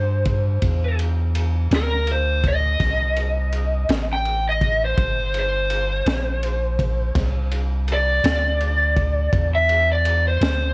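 A lead electric guitar, pushed through a small cranked amp with overdrive, plays a lo-fi, picked solo up front across the whole excerpt, from 0.0 to 10.7 seconds, in a range from Bb4 to G5. This is a slow blues at 55 BPM in 12/8 with a straight feel, set in C mixolydian over a single C9 chord, and its mood is rollicking yet laid-back. Underneath, a punchy sub bass holds the low end between G1 and G2, with a deep, sine-like tone, a fast, pitch-drop attack and sustained notes sitting up front. A crunchy breakbeat drum kit enters at 0.3 seconds with kick drum, ride cymbal and snare drum, sounding acoustic and gritty in a studio room, with dark cymbals, a high-tuned snare, a tight kick, a saturated character and a rolled-off top. Light reverb surrounds the recording, which is cut from a longer piece.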